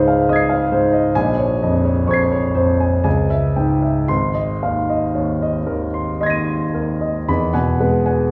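A clear concert grand piano carries this short impressionist solo fragment, cut from a longer classical piece, with a luminous, hazy mood. Played in 3/4 with a free rubato feel at roughly 55-70 BPM, it centres on A♭ major and spans the keyboard from A♭1 up to E♭7. The piano sounds natural and up front, with a deep bass and long sustain. The harmony drifts through Dbmaj9, Bbm9 and D♭ minor before settling on Abadd9, then shifts to a new section at 7.3 seconds with an Eadd9 chord that lingers until the close at 8.3 seconds. A wet recital hall reverb with a 1.8-second decay, blended with a small room ambience heard from further back in the space, gives the sound its glowing halo.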